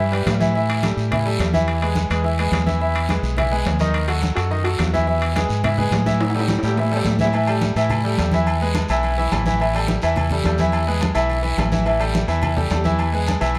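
A light reverb gives this salsa excerpt a sense of space, with a bright, polished concert grand piano and a round, dark fingered electric bass sitting up front from the very start. The mood is passionate and driving in a straight 4/4, the piano playing a brilliant accompaniment spanning D#3 to E5 with deep bass and a short sustain. Congas enter just after, thick-skinned and saturated under soft hands in the background, alongside ringing metal-shell timbales and agogo bells with a vintage, band-limited tone. A raspy guiro joins at 0.3 seconds, carrying a live-room feel. The harmony moves mostly between E and A5, opening on a rootless Cmaj7 and touching an Esus24 along the way, and a drum fill from 6.2 to 7.3 seconds marks the turn into the second section, which carries on until the cut at 13.6 seconds.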